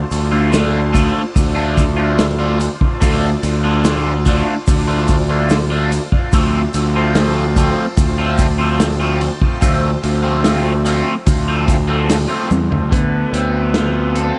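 Trippy and dark, this short psychedelic rock passage in D minor moves at a slow 73 BPM in a straight 4/4, drifting between Dm7 and Fadd9/D before settling back on Dm7. A fuzzed, punchy electric bass sits up front beside a bright, crunchy overdriven guitar riff, double-tracked and coloured with phaser and analog delay. Underneath, a muffled, lo-fi vintage drum kit with a punchy kick and a medium-tuned snare keeps time, while a grainy tube shaker with analog delay hovers in the background. A swirling phased string machine holds very quiet sawtooth chords with slow attack and long release until 12.9 s, just after a drum fill from 12.5 s. At that point a reedy combo organ with heavy vibrato enters with a brief melody to close out the cut, all wrapped in an echo-heavy mix with light reverb, a rolled-off top end and a faint mains hum.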